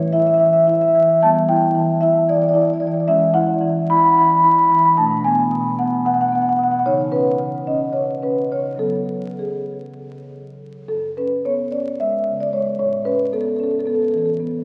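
Crackling like a very old 78 rpm record and bathed in a long cathedral reverb, this hypnotic, reflective fragment of a contemporary classical piece features a solo marimba played with soft mallets, woody, round and up front, moving in a rubato 7/8 at 222 BPM counted in eighths as its harmonies drift from Em6 into F# minor at 3.1 s and come to rest on Aadd9.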